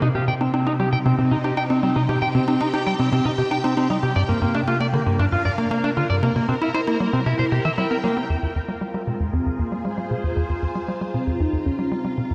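Ambient, sequencer-driven space music at 116 BPM in 4/4, this cosmic, mysterious excerpt moves from C minor through Gm7 and C7 before settling on F minor, all bathed in a lush hall reverb. A tight, punchy, nasal sequencer bass drives a riff beneath swirling, vintage string-machine chords colored by ensemble chorus and phaser, while a bright, picked clean electric guitar plays arpeggios through analog delay until 8.2 seconds. A soft, round, octave-layered synth lead with chorus, tremolo and vibrato enters with a melody at 9.1 seconds, and a very quiet, bubbling, resonant stepped-filter texture joins at 10.3 seconds.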